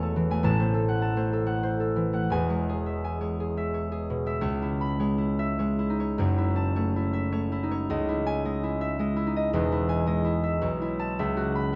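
Classical solo concert harp, dreamy and serene in 3/4 with rubato, its fingerpicked strings ringing up front across a range from E1 to B5 under light reverb and a dark production, drifting from E major harmonies into C# minor at 4.4 s through chords such as F#m7, Emaj7 and B9sus4 before this excerpt cuts off at 11.8 s.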